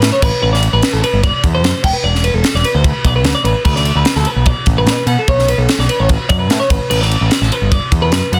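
A math rock and midwest emo excerpt, cut from a longer piece, moves at 148 BPM in a straight 4/4 with a bright, intricate mood, tuned slightly below standard pitch at A4 = 435 Hz. A clean, twangy twelve-string electric guitar plays picked arpeggios across the full 8.4 seconds, its compressed tone set in plate reverb. Beneath it, a growling picked electric bass with overdrive sits up front, direct and amped. A crisp fusion drum kit, recorded acoustically in an airy studio room, drives the part with a high-tuned snare, tight kick and dark crash and ride cymbals. The chords pass from Amadd9 through an E7 with its third omitted, D5 and Bm9 before settling on Asus2, all inside a light reverb and a dense, heavily limited modern master.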